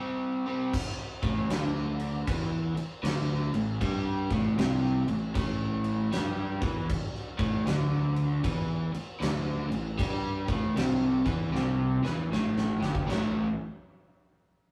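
Gritty and smoky, this short cut from a longer blues rock and southern rock power-trio piece sways at 78 BPM with a swung feel in A minor, opening on an overdriven, double-tracked electric guitar riff that plays alone until the drums and fuzz-toned, round electric bass join around 0.7 and 1.2 seconds. The huge arena kit brings a fat snare, punchy kick, china and crash cymbals in a big-room sound, with a drum fill from 11.5 seconds leading into a brief closing section at 13.1 seconds. The rough rehearsal-room recording has a booth ambience and saturated, reverb-touched character that keeps guitar, bass and drums up front.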